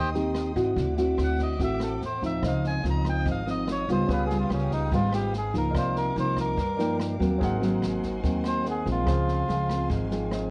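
A light reverb and the worn, warbling character of old cassette tape, with its drifting pitch, colour this brief, breezy bossa nova fragment cut from a longer piece. Up front, a reedy, breathy melodica carries the melody as a solo, its nasal, mellow voice set against a thumb-plucked classical nylon-string guitar that plays the accompaniment. A woody, thumpy pizzicato upright bass on gut strings anchors the low end, while an open jazz drum kit in a small room adds kick drum, rim click and a medium-tuned snare, the kick sounding boomy. A lush symphonic string section, bowed with vibrato and portamento, holds expressive sustained chords in the background. At 2.4 s a warm baby grand piano with short sustain joins the accompaniment, also sitting in the background. The harmony moves through sophisticated extended chords such as Abmaj7, Dbmaj9, Db7#11 and Cm11 before settling on Dbmaj7.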